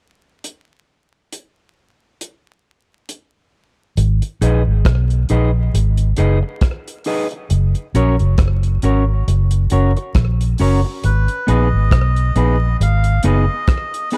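A dry, tight 70s drum kit of hi-hat, kick and rim click opens this laid-back, hypnotic roots reggae excerpt at 68 BPM in G# dorian, joined at 4.0 s by a round, punchy, foam-muted electric bass and soon after by a clean, scooped electric guitar with tape echo over G#m and F#, before a reedy, breathy melodica with tape echo carries the melody from 11.0 s, set in a dark small-room production dusted with vinyl crackle.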